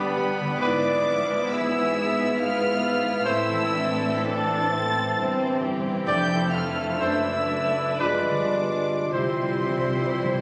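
In a rubato 3/4 at 51-71 BPM, this slow, lyrical romantic passage for symphony orchestra, cut from a longer piece and caught on a phone in a scoring-stage room, sets a veiled, con sordino violin section on the high melody, joined by a second line from another muted violin section, a crisp, hollow flute section, a close-miked clear clarinet and a warm cor anglais, while a mellow, soft-attacked bassoon and lush violas accompany, a dark, distant French horn section holds chords, a solo trumpet adds stabs, a ringing thumb-plucked harp plays arpeggios, cellos and very quiet double basses carry the bass, and hard-mallet timpani bring a fill from 9.1 s as the harmony arrives on C.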